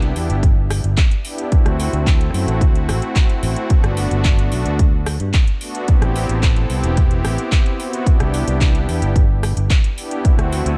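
A groovy, feel-good nu-disco excerpt opens with a growly, bright fingered electric bass and a house kit of handclaps, rim clicks and metallic hi-hats, tape-warm and set in studio reverb, before a punchy, up-front electronic kick enters at 0.4 seconds to drive it. Underneath, a smooth, warbling analog pad of detuned sawtooth tones sustains soft-attack chords with chorus, tape echo and sidechain pumping. The harmony circles through Cmaj7, D7, Gmaj7 and Am7 in a dry, close-sounding mix.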